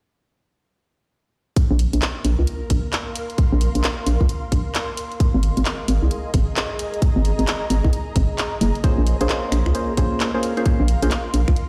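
UK garage in a two-step style at 132 BPM in Bb minor, this moody, skippy cut opens at 1.6 seconds with a tight, tape-warm electronic kick up front and a garage kit of finger snaps, handclaps and hi-hat, joined a moment later by a hollow, knocking FM bass that sounds bouncy and punchy, all swung on the sixteenths. An ethereal, airy pad with ensemble chorus, built-in reverb and sidechain pumping drifts in at 2.2 seconds over chords moving from Bbsus2 to Ab69 to Bbm9, and a percussive, organ-like stab coloured by chorus, phaser and tape echo joins at 8.8 seconds. The mix carries light digital ambience and the stone-room reverb of a big sound system in a bare room.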